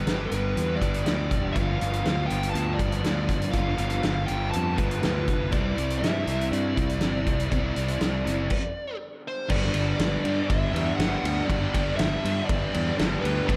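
Shoegaze and dream pop rock at 121 BPM in G major, hazy and wistful, where a compressed, distorted fuzz lead guitar sings its melody through tape echo over a bed of background guitars (a dark overdriven semi-hollow riff with reverse reverb, a thick fuzz riff with ensemble chorus, and a double-tracked crunchy overdriven riff entering at 1.5 s), a fingered electric bass, and a roomy, distant drum kit with a fat snare and punchy kick up front, all moving from G through G7 to Cadd9 before a stop at 8.5 s and a return to G at 9.5 s in a dreamy, reverb-soaked mix.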